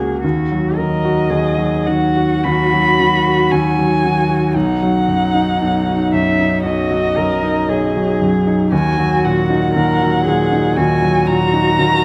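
Heard through close, detailed microphones in a recital hall with moderate reverb, this slow romantic movement for piano trio has a serene, lyrical character, taken at 58 BPM in 4/4 with a flexible rubato feel in B major. A clear grand piano carries the accompaniment from the start, its natural tone and long sustain placed up front. The muted cello, bowed con sordino by a single player, sings a dark second line with vibrato, sitting close in the mix. At 0.8 s the muted violin enters with the melody, its veiled, smooth top shaped by vibrato and portamento and placed up front. The harmony moves from B/D# through B to D#m across this short excerpt from a longer piece.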